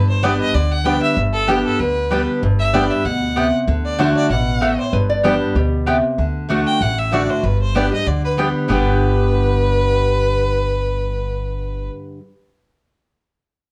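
This lively, joyful bluegrass excerpt opens with a clear, focused fiddle carrying the melody up front, bowed by a single player with light vibrato, over a bright, full-bodied picked steel-string acoustic guitar and a thumpy, woody upright bass. From 0.2 seconds a double-strung mandolin adds picked stabs, while the tune moves at 192 BPM in 4/4 with a light swing on the eighth notes in G major. The chords shift between G and D, and at 4.9 seconds a nasal, metallic lap resonator guitar played with fingerpicks and slide slips in a brief second line before dropping out at 6.1 seconds. The fiddle, guitar and bass sit prominently in a moderate studio reverb. The whole recording carries the worn, warbling pitch drift of old cassette tape, giving the bright playing a faded, vintage cast.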